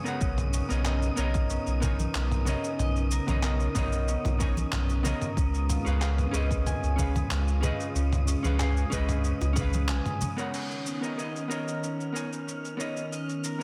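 A round, mellow sub bass sits up front in this wistful, smooth sunset chillout excerpt at 93 BPM in 4/4, entering at 0.2 s with tube saturation and dropping out at 10.0 s. Beneath it, an overdriven electronic kick with a deep, layered body sits in the background, while a gritty, compressed sampler-style soul kit, also overdriven, adds cabasa, crash cymbal, handclaps and toms, joined for a stretch by background congas and bongos. A dark, clean hollow-body jazz guitar plays picked accompaniment through delay, and a ringing, fingerpicked concert harp spins arpeggios through a low-pass filter and delay, with a filter sweep on the harp from 10.5 s. A thick, warbling unison pad with chorus holds sustained chords over Bmaj9 and Db7, and a breathy, wind-like tuned noise layer drifts high in the background. A lush hall reverb surrounds the dense, heavily limited modern master.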